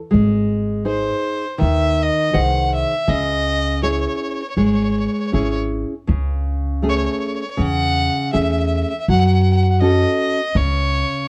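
A lightly swung 4/4 at 81 BPM carries this passionate, wistful Italian folk serenade in C# minor, where a fingerpicked classical nylon-string guitar, full-bodied with audible finger squeak, and a woody, thumpy pizzicato upright bass on gut strings with tube saturation sit up front from the start, joined at 0.9 seconds by a single bowed fiddle singing a smooth, even melody with light vibrato, the trio set in a small room's ambience and colored by the warbling pitch drift of worn cassette tape in this brief excerpt.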